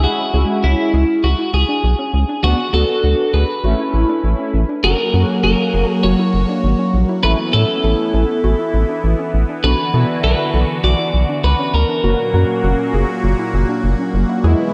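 Melancholic, nocturnal pop at 100 BPM, heard as a short cut from a longer piece, where a bright, twangy twelve-string electric guitar carries the melody through spring reverb and analog delay until 12.9 seconds. A rubbery, bouncy square bass sits up front, while mellow synth brass, a soft round pluck playing arpeggios with chorus, and, from 4.8 seconds, a swirling phased analog pad on sustained chords fill out the harmony. The dreamy mix is soaked in a lush hall reverb, moving from C#m through Bm/D and Aadd9 to F# and Bm7.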